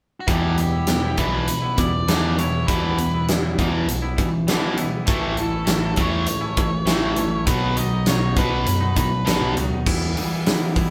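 Quiet-loud alternative rock at 100 BPM in E dorian, angsty and brooding, where a dark octave-fuzz lead guitar carries the melody from 0.2 s over a double-tracked, up-front overdriven riff guitar, a clean, compressed twangy guitar picking arpeggios in the background, a growly, punchy overdriven bass and a big acoustic drum kit with a fat snare, punchy kick and bright cymbals, the band playing live together in one large studio room with moderate reverb as the chords move from Em through A and B before returning to Em at 9.9 s.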